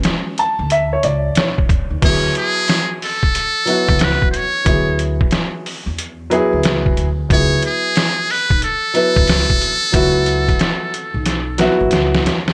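A smooth, warm jazz-hop groove at 91 BPM opens with dark, woody upright piano and a gritty, compressed, pitched-down sampler-style trip hop kit with thumpy kick, medium-tuned snare, hi-hat and crash. Pizzicato upright bass with steel strings enters at 0.6 seconds, and a buzzy, breathy trumpet with a metal mute takes the jazz solo from 2.0 seconds with vibrato and scooped notes over swung sixteenths and chords moving from Bm13 to Dadd9 to Amaj13. A drum fill at 11.3 seconds closes this cut-off excerpt in light reverb.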